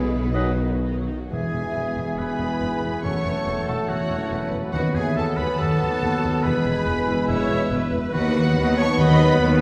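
Classical orchestral music in a dramatic, fast romantic vein, this spirited, lively passage from a longer movement moves at 141 BPM in E major, with a rubato feel that lets the pulse breathe. The melody sits in a lush, bowed violin section with focused vibrato, shadowed by a clearer second violin line, an airy flute section with a crisp attack, a solo oboe and a very quiet, smooth-topped clarinet. Beneath them, a rich viola section and a soft-attacked solo bassoon fill in the accompaniment, a dark, tight French horn section holds sustained chords, and a ringing concert harp traces arpeggios. The bass is carried by the double bass section, a very quiet cello section and a mellow tuba, while a mellow solo trumpet joins with stabs at 1.3 seconds as the harmony settles onto E and moves through F#m7/E and B7/D#. The whole ensemble sounds heard from further back in a recital hall, with a wet reverb.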